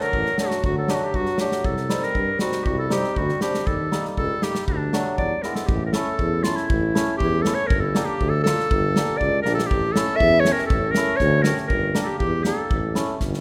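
A clear, classical-style clarinet sits up front and carries the solo melody in this festive, soulful klezmer excerpt in 2/4 with a straight feel. Beneath it, a shimmering hammered dulcimer supplies ringing, acoustic accompaniment. A mellow tuba anchors the low end with soft-attacked, scooped notes and vibrato in a jazz style, sounding distant and roomy. A natural drum kit, close and present with a tight kick and medium-tuned snare in a small-room sound, keeps the beat. The harmony moves through D, C minor and E-flat before a drum fill leads into the second section at 5.7 seconds, where A and G minor alternate, with further fills at 9.5 and 13.2 seconds. A moderate concert-hall reverb gives the ensemble a spacious glow.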